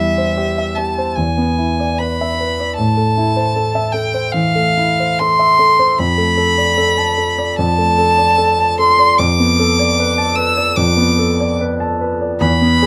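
Solemn and melancholic, this short excerpt from a longer romantic classical piece pairs a rich, smooth violin, bowed by a single player with vibrato, carrying the melody high between E5 and E6, with a concert grand piano whose deep bass anchors the accompaniment from E2 up to A5. At 75 BPM in 4/4, the pulse breathes with rubato and uneven beats, while both instruments sit up front in light reverb. The harmony moves from C/E through E7 and Am to Dm/F, arriving at Bm7b5/F near 9.2 seconds.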